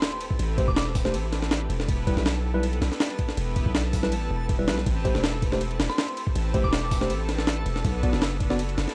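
A pitched-up, compressed jungle break drives this dark, raw drum and bass fragment at 161 BPM in straight 4/4, its thumpy kick, medium-tuned snare, hi-hat and ride sitting up front with a gritty, tape-warm small-room character, while a deep, sine-toned 808-style bass enters at 0.4 seconds with long decaying notes under Am7, Em and Bm in A dorian. A worn, slightly out-of-tune tine electric piano adds dub-echoed stabs, clear bowed symphonic strings hold intense chords in the background, and a reversed, detuned granular texture swells dreamily and brightly in the background. A soft, mellow FM bell with chorus and dub echo sounds a brief melody at the start and again at 5.9 seconds, and the whole recording carries a dry hardware sound with transformer saturation and vinyl crackle.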